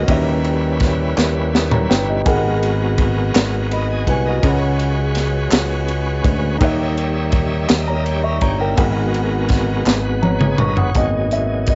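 Solemn and soulful, this slow gospel passage in G# minor moves at 55 BPM in a straight 6/8, cut from a longer piece and carried on a home cassette recording with a dulled top end, as a deep-bassed concert grand piano accompanies while a bright, shouting tonewheel organ holds sustained chords through a fast rotary speaker with light overdrive and key click. A growly, up-front fingered electric bass and a crisp fusion drum kit with a high-tuned snare, punchy kick and pumping small-room sound anchor the groove, while hollow, dry group handclaps sit in the background from 1.2 to 10.2 seconds. The harmony starts on D#7b9b13 and moves through G#m9, C#7sus4, D#7b9 and back to G#m9 before landing on G#m7, with a drum fill near the start and a closing fill shared by drums and organ from 9.9 seconds.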